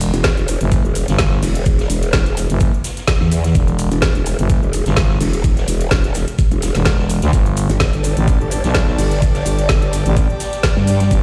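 This short cut of aggressive, bouncy bass house at 127 BPM opens with two growling basses up front, a thick FM bass with overdrive and a wobbling, saturated growl bass with chorus, both pumping against a knocking electronic kick, while a garage kit adds woody snare, metallic hats and shaker, and a high-tuned, rolled-off vintage kit sits in the background. The groove carries a light swing on the 16ths, and the mix has little reverb, heard as if played on a big sound system in a bare stone room. At 7.7 seconds an airy, breathy pad with a bright, detuned shimmer and slow attack eases in over a G5 chord.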